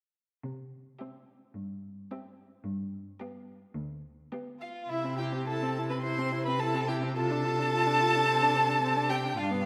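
Lively and graceful, this quick classical-period string quartet movement in C major moves at 108 BPM in a straight 4/4, cut from a longer piece. A single bowed cello opens the bass line at 0.4 seconds, and at 1.0 seconds the first violin joins with a smooth, even melody high in its range, while a focused second violin carries the second line up front and the warm viola fills in the accompaniment, all played with vibrato. The harmony moves from C to G7, returns to C, and then passes through Dm/C to D5/C, and the opening phrase gives way to a second at 4.9 seconds, with the cello's rich tone supporting the ensemble in a wet concert hall with a long reverb.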